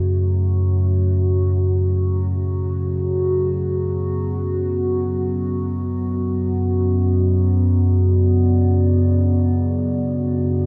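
Drenched in a cavernous cathedral reverb with a small-room ambience beneath, this brief cut from a longer dark ambient piece feels ominous and dark. A rumbling, wave-folded drone sits up front from the start, its deep tone blending triangle and sawtooth with slow attacks, long releases and its own built-in reverb. Above it, a moody analog pad of detuned square and sawtooth waves with a sub octave holds sustained chords under a subtle chorus, shifting from F#m to D6 at 3.8 seconds.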